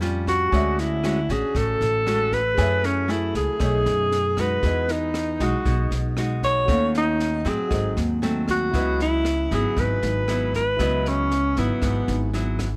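Intimate and smooth, this dry bossa nova excerpt in C# minor at 117 BPM features a mellow alto saxophone with subtone, vibrato and scooped notes leading up front from 0.3 seconds, over fingerpicked classical nylon-string guitar with audible finger squeak, a woody, pizzicato upright bass, a punchy kick, rim clicks and high-tuned snare from a compact cocktail kit, and a very quiet, dark baby grand piano, moving through lush jazz chords from A7alt to a closing C#m11.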